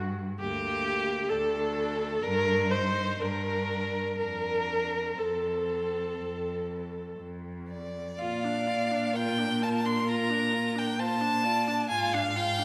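A clear, focused bowed cello opens this tender, rubato slow movement for string quartet in Bb major at about 59-67 BPM, joined at 0.4 seconds by a rich first violin singing the melody with vibrato, soft attacks and expressive portamento, a distant, smooth second violin line and an up-front, even viola accompaniment, all bathed in the wet reverb of a scoring stage as the excerpt moves into a new section at 8.2 seconds.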